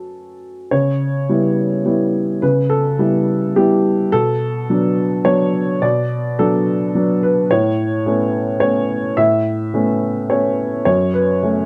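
Neoclassical minimalist piano in an intimate, reflective mood, this short passage is cut from a longer piece and runs just under 12 seconds. A solo upright piano carries everything, its woody, natural tone placed up front and spanning from F#2 to E5. The playing moves in 3/4 with a rubato feel, so the pulse breathes freely. The harmony drifts from F#m through C#m7b5, Bm7 and Aadd9 before settling back on F#m at 10.9 seconds. Light reverb and a dark, warm production give the piano a close, private sound, tuned slightly low to A4 = 438 Hz.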